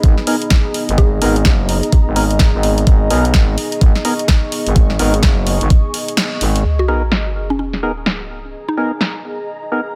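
Bass house with an aggressive, swaggering swing, built on an up-front knocking kick and a growling, thick FM bass under a punchy house kit, with mellow hollow organ stabs, a woody mallet-like pluck, a moody nasal pad and an ethereal airy pad pumping in the background, until the kick drops out at 6.2 seconds and a sub drop hits at 6.6 seconds as the bass stops.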